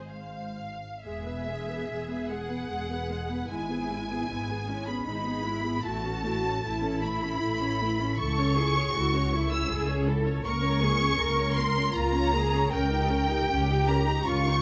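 Close, detailed microphones and light reverb give this excerpt from a longer work an intimate, clear presence. It is a slow, tender romantic movement for string orchestra in 3/4 and E major, moving with rubato at around 58-82 BPM. An intense, distant violin section sings the lyrical melody over a focused second violin line while lush violas supply the accompaniment, and beneath them a smooth cello section and an expressive, up-front double bass section share the bass, each part bowed with vibrato from 0.0 to 14.6 seconds.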